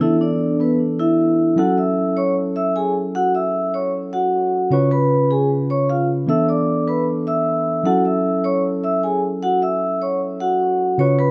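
Hard-hitting yet melancholic, this half-time hip hop excerpt pairs a metallic, ringing vibraphone melody, struck with medium mallets and filtered and touched with tape echo, against a mellow, clean tine electric piano that plays accompaniment through its built-in speakers. Both parts sit up front for the full 11.3 seconds, each passed through a low-pass filter, while the harmony moves from E7sus4 to F#m7 at 1.6 seconds and on through C#7 before circling back. Light reverb and a boxy small-room ambience frame the dark production.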